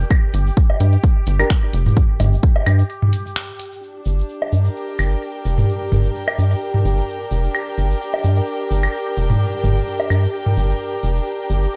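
A rubbery, hollow square-wave bass pumps up front through this clinical, cool minimal techno excerpt in G minor at 129 BPM with a light 16th-note swing, joined by a grainy tube shaker, a bubbling, detuned sawtooth texture with chorus and its own reverb, electronic claves, woodblock and toms that sound re-recorded in a large room, a punchy kick that drops out at 2.5 s, and a house kit of finger snaps and filtered metallic hi-hats, while a nasal, percussive organ stab with lush chorus and analog delay flicks past at 1.4 s before an intimate bowed chamber string section enters on a G minor chord at 3.8 s, all captured in a dry, gritty, tape-colored sound.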